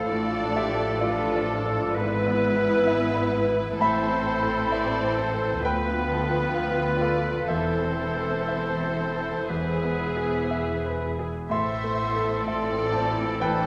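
Brooding and passionate, this romantic classical excerpt for piano and orchestra in A minor moves with rubato at 59-66 BPM, its clear concert grand piano leading the melody up front with deep bass alongside a rich, smooth violin section, while an oboe, a pure mellow flute ensemble, a very quiet clarinet and a second, lush violin section carry second lines, a distant viola section accompanies, a tight French horn section holds sustained chords, and cello and focused double bass sections anchor the bass, all bathed in a wet scoring-stage reverb.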